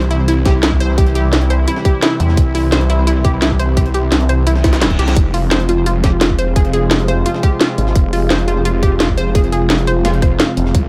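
This dark, technical drum and bass excerpt opens at once with a snarling, growling distorted saw bass sitting up front, a sweeping resonant pad holding sustained chords with chorus and sidechain pumping, and a very quiet, gritty sampler-style breakbeat kit with a high-tuned snare. Within the first second a main drum kit arrives with a cracking snare and metallic hats, and a tight electronic kick joins at 0.5 s; both are layered, produced and carry a small-room sound up close. An analog pluck spins bright, round arpeggios through chorus, cassette-tape colour and delay, pumping along with the pad, while a warbly, nostalgic lo-fi pad sits very quietly in the upper register. A background reverse cymbal plays from 4.6 s, leading into the change from C to F minor at 5.2 s. The mood is aggressive and futuristic, framed by light digital ambience.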